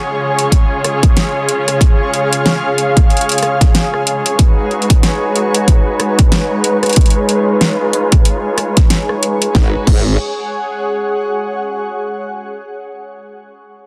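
A dense, heavily limited modern master with light reverb frames this funky, playful glitch hop excerpt in a swung 4/4. A dark, distant chamber string section holds bowed, vibrato-rich chords under a low-pass filter sweep and sidechain pumping, while an up-front granular cloud pad blurs and evolves above it until 12.1 seconds. A punchy, layered electronic kick and a pop drum kit of fat snare, rim click, metallic hats and crash drive the groove, the harmony moves from C# to G#m7, and at 9.5 seconds a saturated, chorused formant-sweep wobble bass bursts in briefly on a low G# as the chord turns to a G#7 that omits the third.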